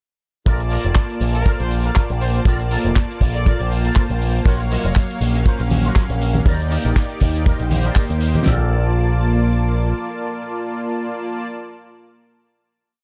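A fat-snared, dry 70s drum kit drives this groovy, sunny nu-disco piece with a four-on-the-floor kick, cabasa, handclaps and hi-hat, joined by a bright, up-front picked bass with an envelope filter playing a dotted-rhythm line, a twangy funk guitar riff, a lush string machine and a smooth, detuned analog pad pumping with the sidechain, while a punchy trumpet section adds short answering phrases from 1.3 seconds, tambourine and congas arrive at 4.5 seconds, and a final chord rings out from 8.5 seconds in a studio reverb within a dark, warm production.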